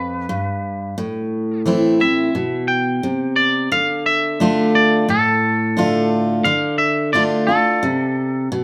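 A bright, twangy electric guitar carries the melody up front in this brief country excerpt, its clean picked lines staying in a high register from the opening moment. For the first 3.7 seconds, the electric guitar plays a clean solo over a G chord that moves to A minor. A picked steel-string acoustic guitar supports it from below, also close and present, with an auditorium-like body and an audible finger squeak. At 3.7 seconds the music shifts into a new section built on D minor, deepening the brooding, heartbroken mood. The straight, unhurried feel in common time, the tuning set to A4 = 443 Hz and a moderate studio reverb give the pair of guitars a natural, roomy sound until the piece is cut off at 8.6 seconds.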